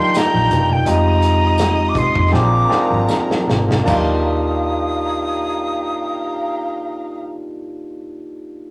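Airy, close-miked flute carries the melody over bowed, vibrato-rich strings and a bright, barky tine electric piano at the start of this lush 1970s-style soul fragment, as the chords move from Cm11 to Ebmaj9 and the pace slows. A soul drum kit with dark cymbals, ringing congas and a jingly tambourine in the background play only until about 4.2 seconds, with a drum fill leading into the second section at 3.9 seconds, while a round, foam-muted electric bass sits underneath from 0.3 seconds. The electric piano rings on alone after the other parts stop, and the rough rehearsal-room recording has tube saturation and a small, booth-like ambience.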